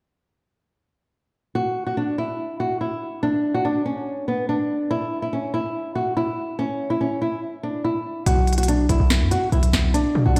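A half-time trap groove at 143 BPM in 4/4 sets a melancholic, menacing hip hop mood in B minor, cut from a longer piece. A small, dark nylon-string guitar carries the fingerpicked melody from 1.6 seconds, up front with audible finger squeak and a tape echo, before a punchy, heavy 808-style bass with a fast attack and decaying sine tone arrives at 8.3 seconds alongside an electronic trap kit of sharp snare and crisp hi-hats. The sound has light digital ambience and the stony reverb of a big sound system played in a bare room.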